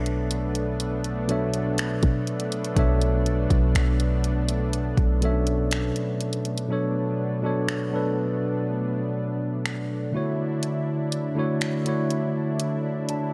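A slow, straight 4/4 groove at 61 BPM opens this late-night, sensual contemporary R&B excerpt in B minor, with a soft, tape-toned electronic kit of finger snaps, hi-hat and kick sitting up front beside a deep, boomy, sine-like 808-style bass that drops out at 5.9 s. A clean tine electric piano, also forward in the mix, carries the Bm11, Bm9 and Dmaj9 harmony over a lush, detuned unison pad with chorus, airy and bright with a soft attack. From 6.7 s the kick falls away, and the electric piano adds a short fill at 12.6 s, all set in light reverb.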